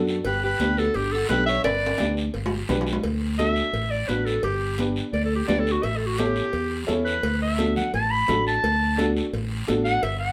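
Joyful and festive, this cumbia cut from a longer piece moves with a straight, lively feel in 4/4, played by a band together in one small, reverberant room. A clear, slightly detuned upright piano with a worn, woody tone and long sustain carries the accompaniment, while a round, punchy fingered electric bass sits up front with a dark, amped sound. Raspy guiro, high-tuned congas with thick skins struck by hard hands, and ringing cowbell and timbales, close and dry, fill out the percussion, the congas kept in the background. A slightly broken-up electric guitar adds a dusky second line only until 2.1 seconds, and a drum fill leads into a new section at 3.0 seconds. From there the present, classical-style clarinet takes a solo over a progression moving from D through G and A7 and back to D.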